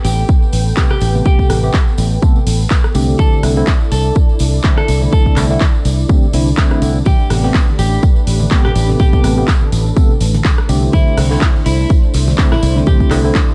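A punchy, tape-warm electronic kick sits up front from 0.3 s in this deep, late-night deep house excerpt at 124 BPM in A minor, driving a lightly swung groove alongside a foam-muted fingered electric bass with tube saturation and sidechain pumping, plus an analog drum machine's handclaps, hi-hat and rim click and a jingly, compressed tambourine in the background. Over a detuned sawtooth pad with chorus and pumping, a clean picked electric guitar carries the melody through lush chorus and tape echo, while a bell-like tine electric piano enters at 0.8 s with phaser-and-echo stabs across Am9 and C69 chords. At 7.1 s a dry, very quiet 70s drum kit with a fat snare and soft-handed congas join, all wrapped in small-room ambience and vinyl crackle.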